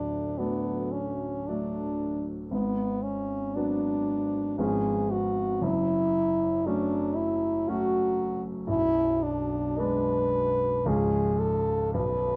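A clear French horn carries the melody at the front of this solemn, elegiac romantic duo, singing in a classical style across a range from B3 to B4. Beneath it, a warm, natural-sounding grand piano supplies the accompaniment, reaching down to a deep B0 and rising to D4, and both instruments play together for the full 12.4 seconds. The music moves slowly in 3/4 at roughly 52-60 BPM with a flexible rubato feel, set in F# minor. The harmony begins on D, darkens through G#m7b5 and C#7/G#, settles on F#m, and then passes through G#dim/B before resting on C# at 10.9 seconds. Light reverb and a dark production give the fragment, taken from a longer piece, a mournful atmosphere.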